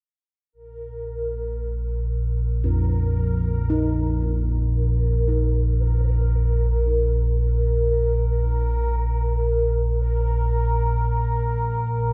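Unmeasured and in free time, this short passage cut from a longer dark ambient drone piece feels unsettling and desolate. An analog drone sits up front from 0.9 seconds, spanning Bb1 to Bb2, its sawtooth, pulse and wave-folded tones warbling and evolving under lush chorus while a filter sweep moves across it. Just before it, at 0.7 seconds, a bubbling stepped-filter texture enters on Bb4, a detuned, resonant sawtooth layer stepping through random filter changes, wrapped in chorus and its own reverb. Gamelan-type bossed gongs arrive at 2.6 seconds with arpeggios between F2 and Eb4, their bright, airy, bronze and beating ring carried by tape echo until they fall away at 10.0 seconds. A light studio reverb and an echo-heavy mix surround the parts, with the drone and texture sustaining to the close.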